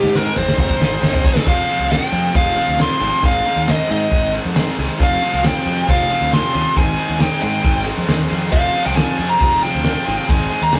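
Classic rock at 136 BPM in a straight 4/4, this driving, gritty excerpt is cut from a longer piece and alternates between Ab and Fm chords. It opens with a drum fill and a lead guitar solo over the first 1.5 seconds. The bluesy lead guitar then carries the melody up front with a dark, distorted tone, while the damped 70s kit sits equally forward with a fat snare, tight kick, dark cymbals, hi-hat and toms. Beneath them, a bright cranked stack guitar and a biting overdriven guitar, tucked in the background, play picked riffs, and a growling fingered bass adds overdriven grit in the low end. A clear, woody upright piano supplies very quiet accompaniment, and a jingly, vintage tambourine glints faintly behind everything. The rough rehearsal-room sound carries tube saturation and a moderate studio reverb.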